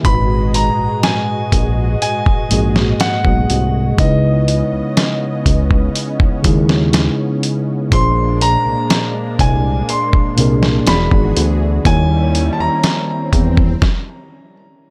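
A mellow tine electric piano, a lush detuned unison pad with chorus and a gritty, compressed sampler-style drum kit with a thumpy kick open this late-night contemporary R&B excerpt in G# minor at 61 BPM, joined almost at once by a fat, detuned analog bass with a filter sweep and a clear, intimate grand piano melody carrying delay and audible action noise. The longing harmony moves from G#m9 through C#m9 and A#9 to E9 and D#7b9, with the drums sitting up front in a digital ambience. The grand piano melody ends at 13.5 seconds, and the other parts stop at 13.8 seconds, save the drums, which ring on until 14.0 seconds.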